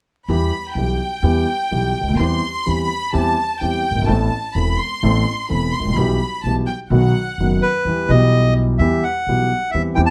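Tango in E harmonic minor at 127 BPM with a dramatic, sultry rubato feel, where a lush, vibrato-rich bowed violin section carries a smooth second line over a dark, mellow concert grand piano with deep bass and a woody pizzicato upright bass, until the violins stop at 7.6 s and a reedy, bright bandoneon takes the melody up front, all set in a moderate studio room under a layer of vinyl crackle.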